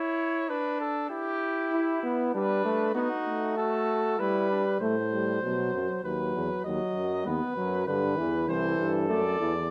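Two trumpets open this solemn, serious imitative canzona for brass in E minor at 98 BPM in 3/4, a clear, lightly vibrato-shaded lead that sounds distant and roomy set over a smooth-topped second line with vibrato, joined at 1.7 s by a trombone accompaniment with light vibrato and at 4.8 s by a warm euphonium bass, heard through close, detailed microphones in a moderate recital hall reverb.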